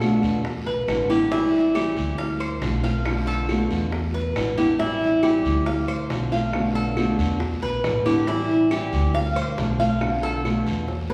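A straight 4/4 pulse at 138 BPM drives this danceable, nostalgic fragment of Cuban son and guajira in A minor, tuned slightly flat to A4 = 435 Hz. Soft-handed, low-tuned bongos with a round tone sit in the background beside woody claves, while a raspy guiro scrapes along with them. Up front, a dark, thumpy upright bass with gut strings plays pizzicato in its low register, and a fingerpicked nylon-string guitar with a small, warm sound supplies the accompaniment. The Cuban tres, picked on metallic double strings with some octave doubling, spins arpeggios above them over a repeating cycle of E7, Am7, Dm7 and Bm7b5. A drum fill arrives at 10.9 s as the guitar stops, and the recording is bathed in a wet, hall-like reverb with a small-room ambience.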